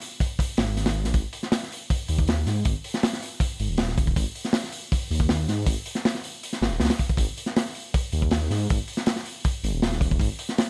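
A crunchy breakbeat drum kit opens this frenetic, dark drum and bass excerpt at 159 BPM in straight 4/4, with kick, snare and hi-hat sounding gritty and saturated in a small acoustic room. The kit is up front, with a tight kick, a medium-tuned snare and a rolled-off top that keeps its tone dark and smooth. At 0.6 seconds a detuned saw bass enters, thick and beating, with a menacing sawtooth edge over a sine body. It holds sustained notes with a fast attack between D#1 and G#2 in G# minor, its saturation giving it a mellow heft alongside the drums. Both parts sit close and dry with little reverb, pressing forward as a single jungle section cut from a longer piece.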